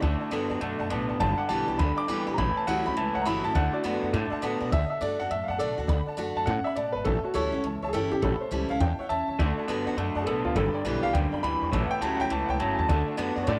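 Retro and rowdy, this swung rock number in D major races along at 205 BPM, with a woody, thumpy upright bass up front, a full-bodied picked dreadnought acoustic guitar with audible finger squeak, and a detuned, jangly honky-tonk upright piano sitting in the background. A twangy, slightly broken-up lo-fi electric guitar with vibrato plays an up-front riff, drops out at 4.7 seconds and returns at 9.4 seconds. A clear, natural upright piano with slapback echo carries the melody from 1.2 seconds and takes a solo from 4.7 seconds, following a brief honky-tonk piano fill, all set in a small room with moderate echo-chamber reverb.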